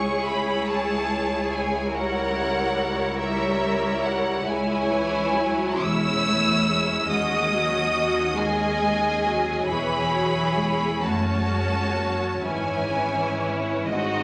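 Elegiac and solemn, this slow, rubato romantic movement for string orchestra in 6/8 sets a rich, focused, vibrato violin melody up front over a lush second violin line, even viola accompaniment, and cellos and a distant double bass section sitting low in the background, all wrapped in a recital-hall reverb as the excerpt moves through C-sharp minor harmonies before the top melody stops at 13.9 seconds.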